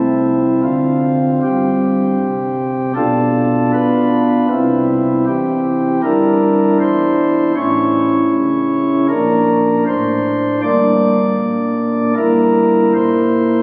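A freely stretched 4/4 pulse at a moderate 78 BPM guides this brief chorale-style classical passage for solo pipe organ, which is cut from a longer piece and carries a reverent, serene mood. The organ's soft flute stops sound warm and sit up front, voiced in a romantic manner across a span from a deep G1 to D5. They move through shifting harmonies from C through half-diminished colors, then A, Bb and Gm, before settling on a closing diminished chord. It was captured on a phone in the room, so a wet church reverb with a 3.9-second decay surrounds it, together with a club-like reverb and compression.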